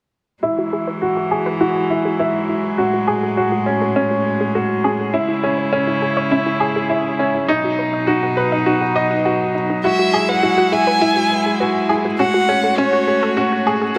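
In a straight four-beat pulse, this tender, hopeful electronica excerpt sets a bright, woody upright piano riff, slightly detuned with audible action noise, up front and run through a filter sweep and tape echo. A reedy, gut-string quartet sustains chords beneath it, while a lush, punchy sawtooth pluck with a ring-modulated edge plays arpeggios in the background, also carrying a filter sweep and tape echo. At 9.8 seconds a single expressive violin enters with a melody full of vibrato and portamento, all set in a huge ambient reverb.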